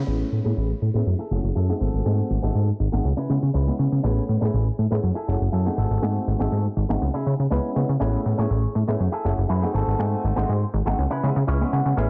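A dense, heavily limited modern master with light digital ambience frames this sunny, joyful house excerpt, where a punchy, funky analog bass with a fast-attack, decaying filter pluck sits up front, a boxy grand piano with audible action noise, phaser and vintage 12-bit sampler grit plays chords built around Amaj9 and F#m9, a bright, twangy envelope-filtered electric guitar carries the riff, a filter sweep runs throughout, and a clean electric guitar fill arrives at 11.2 seconds.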